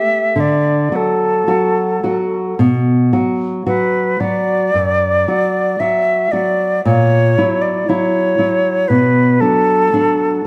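A silver concert flute and a nylon-string guitar begin together in this lyrical, warm romantic duo, a short passage cut from a longer piece at a rubato 57 BPM in 4/4. The airy flute sings the melody with vibrato and a crisp attack, while the small-sounding, thumb-plucked guitar with fresh strings accompanies through D, Bm, F#7/A# and back to Bm at 8.9 seconds. Both instruments sit up front in a moderate concert hall reverb.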